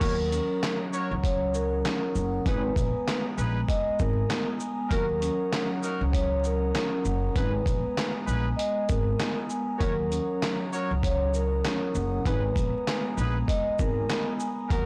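Boom-bap hip-hop in Eb minor, this dark, gritty passage is cut from a longer piece and moves at 98 BPM in 4/4 with a 16th-note swing, circling between Ebm7 and Abmadd9 every few seconds. A sampler-style drum kit sits up front, compressed and pitched down, with a thumpy kick, a medium-tuned snare, handclaps, hi-hat, shaker and crash cymbal, re-recorded in a large room. A pizzicato upright bass on steel strings gives a woody, acoustic low end, roughened by transformer saturation. Two soft-mallet vibraphones carry the harmony and tune: one plays a mellow, airy melody with slow motor vibrato and analog delay, while the other, motor off and mid-forward, rings out metallic accompaniment. Brilliant, close-miked trumpet stabs with light vibrato and analog delay punctuate the groove, as a deep, nasal, detuned analog pad with chorus holds sustained chords in the background. The whole mix feels blown-out and overdriven, with vinyl crackle, light reverb and small room ambience.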